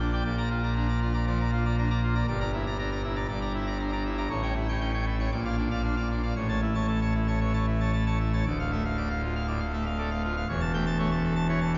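A solo pipe organ on full registration, mixtures blazing, plays a dramatic, stormy classical toccata in D minor at 118 BPM in a straight 4/4, its majestic, brilliant baroque voicing spanning from the deepest pedal D1 up to Bb5. The harmony moves through Bb, Em7b5/G and A7 before settling on D minor at 8.5 s and closing on A7/E. This fragment, cut from a longer piece, is heard from further back in a church whose 3.2-second reverb drenches the sound and dulls its highest overtones.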